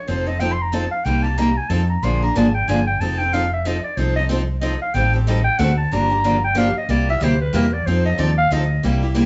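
Swinging in a lively 3/4 at 185 BPM, this jazz manouche excerpt in F mixolydian puts a raspy, growling clarinet up front for a solo full of scooped notes and light vibrato, backed by two bright, freshly strung picked steel-string acoustic guitars (one a boxy parlour, the other an auditorium body) and an amped, up-front fretless electric bass, all captured live in one room with light reverb and a soft, rolled-off top end.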